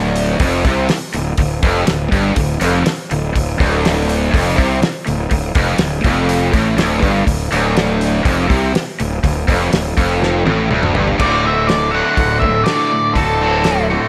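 Classic rock at 122 BPM with a sunny, driving mood, this cut from a longer piece opens on two bright, picked, overdriven electric guitars riffing over a D5 chord, one scooped and compressed, with a fuzzy fingered bass and a dry, damped 70s drum kit with a fat snare and tight kick sitting up front in a small room. After a drum fill from 10.2 seconds, the harmony moves to D at 11.2 seconds as a dark, octave-fuzz lead guitar enters with a distorted melody spanning A4 to F#5.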